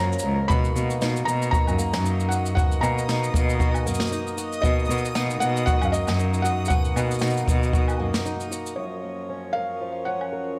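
Lightly reverberant studio ambience surrounds this hopeful, playful folktronica excerpt with a gentle swing, where a soft, felt-muted upright piano carries the melody with delay over reedy, breathing chords from a pedal harmonium in the background and dark, woody arpeggios from a fingerpicked old ladder-braced acoustic guitar, while a rich, smooth bowed cello holds the bass up front until 8.1 seconds, a boomy brushed kick joins brushed shaker, snare and woodblock, a reversed, dreamy, granular swelling texture drifts in from 2.1 seconds, and after a brief break the guitar takes a filter sweep from 8.8 seconds.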